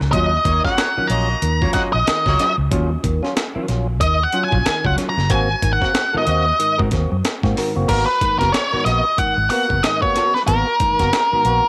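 Set in a light reverb, this hypnotic, driving funk excerpt at 93 BPM with a swung sixteenth-note feel puts an up-front, distorted octave-fuzz lead guitar solo over gritty, compressed breakbeat sampler-style drums with a thumpy kick and high-tuned snare, a round, punchy, foam-muted fingered bass, fat tonewheel organ stabs with key click and slow rotary speaker, and a dark, clean hollow-body jazz guitar in the background, while a distant horn section with light vibrato and slapback echo is heard only from 0.5 to 2.5 seconds, as the harmony moves from Ebm9 to Ab9 and on to Abm9 at 7.9 seconds.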